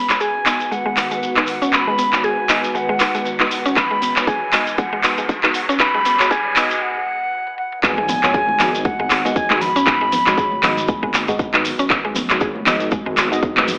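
Heard through a thin, AM-radio filter with a moderate plate reverb, this hypnotic, spiritual afro house excerpt opens with a pure, straight-toned concert flute melody carrying dub echo over woody mallet-like plucks, an ethereal background pad, deep mellow chord stabs, grainy shekere and crisp up-front house drums. It builds with filter sweeps and a background riser, with a punchy electronic kick entering at 3.8 seconds, then drops at 7.8 seconds into a dark, rumbling detuned saw bass with pumping sidechain, an electronic impact and bright, hard-handed congas.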